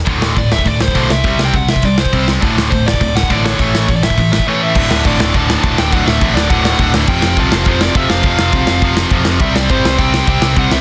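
Dry, dense and heavily limited, this rowdy, upbeat punk rock snippet is driven by an up-front studio drum kit with a boomy kick and medium-tuned snare, a growly, punchy overdriven picked bass, and a wall of riffing guitars: a cranked stack and a tight distorted part sitting in the background, plus a very quiet double-tracked, scooped high-gain layer. A nasal lead guitar with a parked wah enters at 0.4 s with a high melody.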